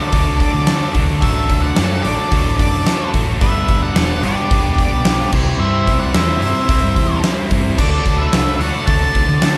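A big arena sound fills this short classic rock clip, set in a moderate, lush hall reverb with faint lossy compression artefacts. Swaggering and sunny, it moves at 110 BPM in a straight 4/4, sitting in D mixolydian and cycling through D, G, C and back to D. Two dark octave-fuzz lead guitars carry the tune, one playing the melody and the other a second line tucked behind it, both with distortion and slapback echo. Beneath them, a crunchy overdriven guitar and a bright, compressed distorted electric guitar play riffs in the background, each carrying slapback echo. A round, punchy hollow-body short-scale bass played with the fingers enters at 0.1 seconds alongside a huge acoustic drum kit whose fat snare and punchy kick sit up front with hi-hat and crash cymbal.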